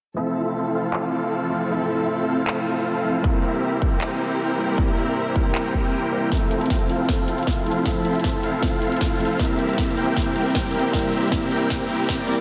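Future bass in F major at 156 BPM with a half-time feel, this playful, euphoric cut from a longer piece rides a huge, detuned supersaw riff up front, pumping against the sidechain with delay and a filter sweep during the build-up from 6.3 s, while a worn, slightly out-of-tune tine electric piano, lightly overdriven through a combo amp, and a lush bowed string section in the background hold the Fmaj7 to C7 chords. Trap drums with a sharp snare and bright hats enter at 0.9 s under a filter sweep, joined by a punchy, layered electronic kick at 3.2 s that drops out briefly before a drum fill drives the second half. The whole mix is dreamy and soaked in a long ambient reverb.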